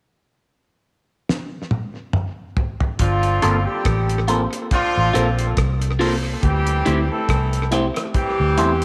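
A dark, round, foam-muted fingered bass sits up front in this bittersweet, longing lovers rock reggae fragment at 70 BPM in G dorian, arriving at 3.0 seconds alongside a clear, roomy horn section in octave doubling as the harmony moves from Gm11 to D9sus4. Before that, a cloth-damped, thuddy drum kit with a fat snare, tight kick and tape echo opens with a fill at 1.3 seconds, settling into a gently swung sixteenth feel. A worn, slightly out-of-tune tine electric piano with tape echo and slightly broken-up electric guitar stabs through a phaser fill in the middle, all bathed in a moderate echo chamber reverb.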